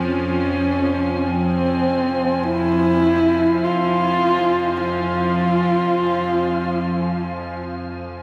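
Cavernous and dark, this ambient drone fragment sets an up-front horsehead fiddle playing a nasal, husky melody with vibrato and portamento, dressed in shimmer reverb and delay, over a tense, string-like drone with phaser, a deep analog pad with chorus in the background, and a faint icy, crystalline glass pad high above, all within a long, wet cathedral reverb that fades out from 5.2 seconds.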